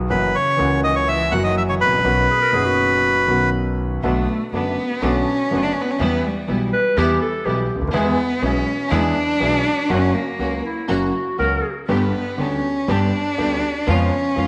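A rubato tango in 4/4 stretches and pulls at its pulse in this nostalgic, passionate fragment cut from a longer piece. An up-front bandoneon carries the reedy, bright melody only briefly before a bowed cello takes over as soloist at 4.0 s, a single close player with vibrato, portamento and a soft attack. Beneath it, an intimate concert grand piano with deep bass and audible action noise supplies the accompaniment, while a pizzicato upright bass adds a woody, dark low end. A clarinet with a smooth top and classical style appears in two passages, coloured by a slapback echo, and a focused studio string section punctuates the second half with bowed stabs. A wet echo chamber reverb surrounds the ensemble.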